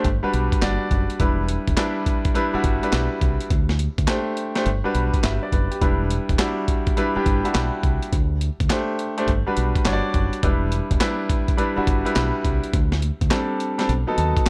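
A clear, polished baby grand piano, a dark, round fingered electric bass and a gritty, compressed breakbeat kit of thumpy kick, medium-tuned snare, hi-hat and handclaps start together in this confident, slick new jack swing excerpt at 104 BPM in E minor, swung on the sixteenths. The piano cycles through Gmaj7, Em7 and D7sus4 over the punchy bass, with the tape-warm, small-room drums sitting up front beside the piano and a light digital reverb adding ambience. At 13.9 seconds the piano plays a short fill over a B7 chord before the clip cuts off at 14.5 seconds.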